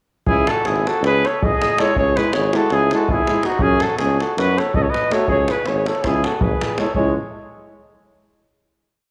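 A warm, distant flugelhorn opens at 0.3 s with a hook-based melody over a dark trumpet harmonizing mostly in thirds, a clear, vintage tuba on root and fifth, and a tight two-stick davul pattern. At 1.8 s a mellow French horn and a roomy trombone join in the background with offbeat chords, and this virtuosic, restless Balkan brass piece in 9/8 keeps up its classical polish in an echo-chamber ambience until a final chord at 7.0 s.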